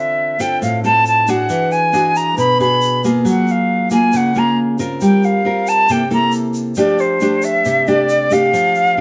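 Recorded live in one room with a moderate large-studio reverb, this romantic, sunny bossa nova excerpt places flute and guitar up front. At 137 BPM in F major, a classical nylon-string guitar, warm, full-bodied and fingerpicked with audible finger squeak, moves from Dm7 through Gbmaj9 to F69, while a silver concert flute carries the melody with an airy, metallic tone, vibrato and soft attacks. A grainy, bright tube shaker enters at 0.4 s and sits quieter in the mix.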